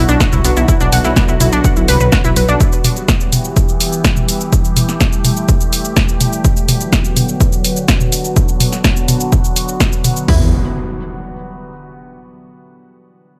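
A dark, dramatic melodic techno fragment opens on a morphing, warbling wavetable pad with phaser and reverb, a round, bright analog pluck arpeggio with chorus and delay, and a menacing detuned saw bass, all pumping against the sidechain over Bm and Em chords. Layered house drums arrive almost at once, up front and tape-warm, with a punchy kick and snare, hi-hats, shaker and toms, while the pluck and bass drop out at 2.6 seconds, leaving the pad to carry the harmony. The pluck and bass return briefly at 10.3 seconds as the drums stop, and an electronic impact hits at 10.4 seconds to close the fragment in a dry sound.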